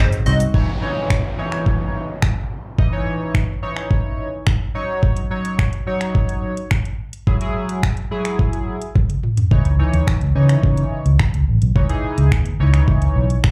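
Heard as if through a club's PA at a live gig, this energetic, driving dance-pop fragment rides an up-front electronic R&B drum kit of knocking kick, metallic hats, snaps, shaker and toms, with a glossy, retro chorused polysynth pumping behind it, a barely audible ethereal pad, an electronic downlifter with slapback echo falling away by 5.0 s, and a dark, round, foam-muted electric bass that drops out after the opening and returns at 9.5 s following a short drum fill.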